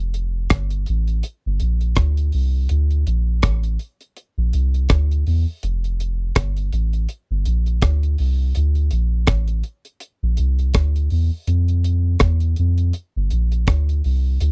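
A dry, close recording in a 1970s studio style carries this short, warm and uplifting roots reggae cut, taken from a longer piece and swung lightly on the sixteenths. A soft, round dub sub bass sits up front from the first moment, its deep, sustained tone blending triangle and square waves with a fast attack. An acoustic reggae drum kit joins at 0.1 seconds, tight kick, hi-hat and rim click sounding dry and up front alongside it until the cut ends at 14.5 seconds.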